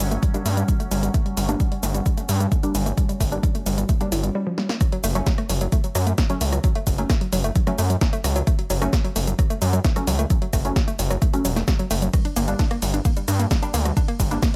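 A gritty, nasal synth bass sits up front with saturated, aggressive sawtooth bite, driving this intense peak-time techno excerpt at 131 BPM in F# phrygian. Alongside it are an overdriven, punchy electronic kick that enters at 0.2 seconds and a dry analog drum machine of hi-hat, ride, rim click, shaker and snare, with the bass and drum machine pumping with sidechain. A woody, wave-folded pluck riff with chorus and tape echo plays throughout, while muted, detuned dub chord stabs with phaser and cassette tape sit in the background. A resonant drone of moving overtones also hangs in the background until 4.3 seconds. After a short break and a drum fill at 4.6 seconds, the drop lands at 4.8 seconds as the chords shift from Gm to F#m and return to Gm at 12.1 seconds.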